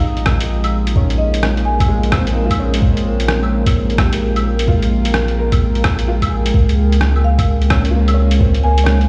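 A bright, woody upright piano with vintage 12-bit sampler grit and digital delay opens this nocturnal, rainy future garage excerpt alongside a dark, detuned ambient pad with chorus, a round sine sub bass with sidechain pumping, and a mellow soft-mallet marimba in the background that returns at 7.2 s, while muffled, pitched-down claves, hi-hat and rim click swing on the sixteenths over a soft electronic kick re-recorded in a small room, the harmony moving from Bbm7 to Db6 and the mix sitting in a stone-room reverb with nothing above 11.0 kHz.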